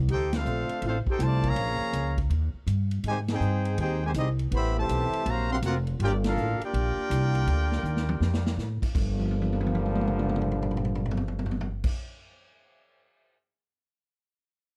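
A small, roomy studio sound frames this swinging, sultry big band jazz piece in G minor at 162 BPM. A woody pizzicato upright bass sits up front beside a drum kit with dark cymbals, a medium-tuned snare and a punchy kick. Bright trumpets with light vibrato and a soft attack carry the melody over a warm trombone second line, with band accents at 0.3, 3.2 and 6.2 seconds, and after the trumpets drop out the drums play a fill under the trombones and bass.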